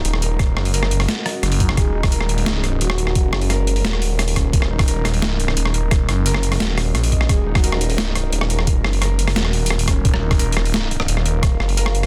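A swirling, thick phased saw bass with tube saturation sits up front in this cinematic, spacious half-time drum and bass excerpt at 174 BPM in Eb minor, driven by a gritty, overdriven sampler-style kit with a high-tuned, soft-clipped snare, hi-hat and rim click, plus a thumpy pitched-down electronic kick entering at 0.4 seconds. A deep, moody ambient pad sustains chorused Ebm chords with sidechain pumping, and a muted felt upright piano with audible action noise and 12-bit grit plays tape-echoed arpeggios in the background. A breathy, flute-like synth lead with vibrato and dub echo briefly surfaces around 1.8 and 7.3 seconds, all in a dense, heavily limited modern mix with little reverb.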